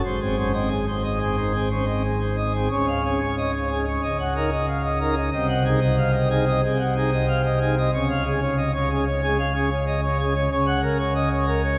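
In a straight 4/4 at 92 BPM, this jubilant, brilliant organ toccata in Db major moves with steady purpose. A solo pipe organ on full plenum carries the whole passage, its mixtures giving the sound a brilliant, ringing crown, and its romantic voicing spans from a deep Ab1 up to Gb5. The organ sits up front in the sound, yet the listener seems placed further back in a cathedral whose long, wet reverb lets each chord hang for seconds. An opening on Ab gives way at 2.7 seconds to a stretch centred on Db, passing through Ebm7 and Ab7 harmonies over shifting bass notes before returning home and settling on a Gb chord above a Db bass at 10.5 seconds. Cut from a longer piece, the passage feels like a glorious, resonant moment caught mid-flight.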